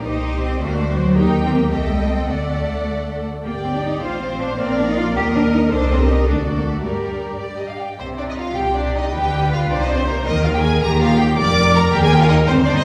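Heard from further back in a reverberant scoring stage, this urgent, restless excerpt of a quick classical-period movement for string orchestra in 6/8 shifts into a new section at 8.0 s. Lush bowed violins with vibrato carry a focused, smooth-topped melody above an expressive, close second violin line, while the violas supply a clear accompaniment. Beneath them, a rich, even cello section and an up-front double bass section with warm vibrato share the bass.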